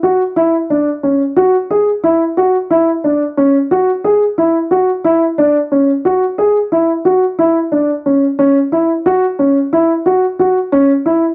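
Set in a straight 7/8 at 179 BPM counted in eighths, this driving, intricate progressive instrumental is carried by a lone dark grand piano that plays from the start to 11.2 seconds within a narrow band from C#4 to G#4. The mellow piano sits up front in a small room with light reverb, captured in a home recording on cassette. Cut from a longer piece, the passage moves into a new section at 8.4 seconds.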